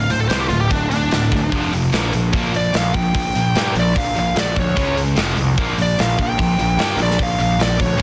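This short heavy metal excerpt drives at 148 BPM in a straight 4/4, with a tight metal drum kit entering at 0.1 seconds to push hi-hat, kick drum and snare drum up front, its kick given soft clipping and its overall sound saturated and gritty with a medium-tuned snare. Beneath it, a high-gain distorted guitar, double-tracked and bright, picks a low riff from D2 to C#4, while a fuzz picked electric bass adds a growly overdriven bottom from D1 to G2. Over this foundation, a smooth overdriven lead guitar with a dark, picked tone plays a solo for the full 8 seconds, ranging from D4 to G5. The harmony moves through D5, F5 and Bb5 chords and later C#5, giving the passage a dark, epic mood. A small room ambience surrounds the parts, and the dense, heavily limited modern master keeps the whole mix thick and forceful.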